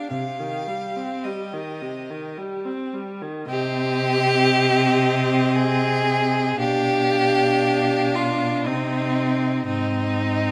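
Yearning and solemn, this fragment of a slow romantic movement for string quartet moves in a rubato triple metre: a rich, smooth violin sings the melody over a focused second violin line, an intense viola accompaniment with an airy bow, and an even cello bass with light vibrato, the lower three voices sitting up front in a moderate recital hall reverb.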